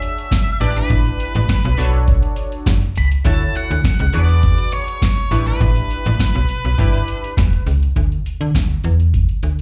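Heard through a club PA with the room's reverb around it, this slick, danceable early-eighties boogie funk piece moves at 102 BPM in a straight 4/4, led by a dark, fuzzy octave-fuzz electric guitar melody with slapback echo and plate reverb over a bright, detuned sawtooth polysynth comp washed in chorus. Up front, an analog drum machine drives with a deep kick, punchy snare and metallic hats, while a snappy, digital FM bass with a slap-like attack joins at 0.6 s beneath chords moving through E13, A9sus4, Bm9 and Dmaj7. The guitar and synth drop away before a break at 8.0 s, where the drums and bass carry on alone to the end of this passage cut from a longer piece.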